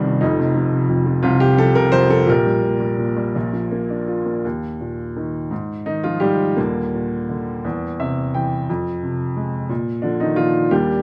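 A clear, open baby grand piano plays alone from the start in this tender, calm classical excerpt, a lyrical solo in E-flat major at a rubato 55-60 BPM in 6/8, tuned to A4 = 442 Hz. Its long sustain rings from F1 to G5, sitting up front under light reverb and close, detailed microphones. After a brief opening passage, a second section begins at 4.4 seconds, with a short piano fill at 7.6 seconds over C7/E before the harmony settles through Fm to B-flat.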